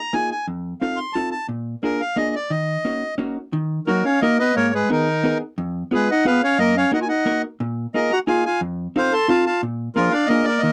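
A musette waltz in Eb minor at 177 BPM, this short excerpt cut from a longer piece has a whirling, bittersweet mood in a straight 3/4 feel. The accordion carries the melody from the start, its single-reed tone reedy and clear with a dry tuning, sitting up front in the mix. Just behind it, a vintage hollow-body electric jazz guitar supplies the accompaniment, its picked sound clean, compressed and dark, also placed close and forward. At 3.9 seconds, as the opening passage repeats, a clarinet enters with a second line in a classical style, its tone shadowy and set back at a distance, with a roomy quality. The harmony moves through dominant and diminished colours such as F7, Bb7 and Fdim, alongside chords like Abmadd9 and Bb7sus4, around the Eb minor home chord, and the whole has the dry, intimate sound of a close 1970s-style studio recording with little reverb.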